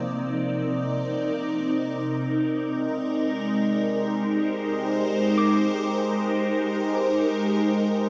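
Drenched in a cathedral-like reverb with a 5.4-second tail, this ambient passage from a longer piece drifts in free time with a warm, weightless mood. An evolving, detuned wavetable pad sits up front with a bright, morphing tone, holding sustained chords that move from Cm7 to Abmaj9 at 2.5 seconds, colored by ensemble chorus and phaser. Behind it, a soft, round, darker pluck fades in across the full 8.1 seconds, playing arpeggios through lush chorus and a diffuse ambient delay.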